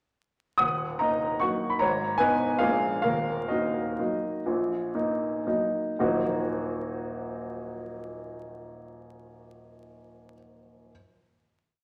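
In a rubato 3/4 waltz that drifts between 110 and 158 BPM and slows from 2.4 to 6.0 seconds, this brief, complete classical piece in Eb minor unfolds with a wistful, elegant mood, moving through Ebm, Abm and Bb7 before settling on a final chord at 6.0 seconds. A solo upright piano, clear, woody and up front, carries a tune in sixths over a waltz bass. Its open tone sits in a wet recital-hall reverb, with vinyl crackle beneath.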